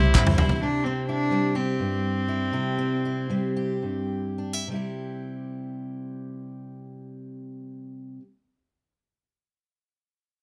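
A straight 4/4 pulse somewhere between 102 and 130 BPM opens with dark pizzicato upright bass, a shimmering octave-doubled twelve-string guitar, twangy banjo arpeggios played with fingerpicks, a very quiet, clear upright piano and a soft, flute-like tonewheel organ through a slow rotary speaker, joined a moment later by a punchy drum fill on kick and toms, all lasting for that first 0.6 s. From there a bright fingerpicked steel-string guitar takes over the accompaniment up front as the tempo slows, while the bowed cello, heard from the start with a nasal, reedy gut-string tone, carries the melody until 4.1 s. This uplifting indie folk passage in C major is cut from a longer piece and sits in a small room with light reverb.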